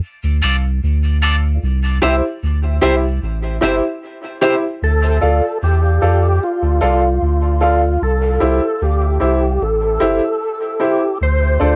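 A fat, lightly overdriven tonewheel organ with key click, chorus vibrato, a slow rotary speaker and dub echo carries the melody from 4.8 seconds in this meditative, heavy reggae excerpt at 75 BPM, over a deep, round dub sub bass with transformer saturation, polished grand piano stabs echoing through dub delay, and a slightly broken-up, picked electric guitar heard only until 4.5 seconds during the opening break, all moving between Dm and C in a lightly reverberant home cassette recording.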